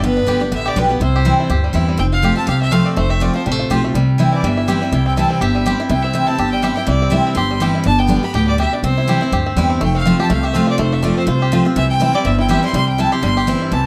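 Bluegrass at a brisk 246 BPM in C major, with a lightly swung eighth-note feel and a virtuosic, lively mood, heard as a short cut from a longer piece. A single bowed fiddle carries the melody in the B4 to C6 register, its tone rich and earthy yet set back at a distance. Up front, a bright, full-bodied dreadnought guitar picks out the accompaniment, while a twangy, percussive banjo played with fingerpicks plays arpeggios. An upright bass with gut strings anchors the low end with a dark, thumpy pizzicato, and a mandolin, entering at 0.3 seconds and sitting in the background, adds woody double-string stabs. The chords move among G, C and F, and the close, detailed sound carries only a touch of reverb.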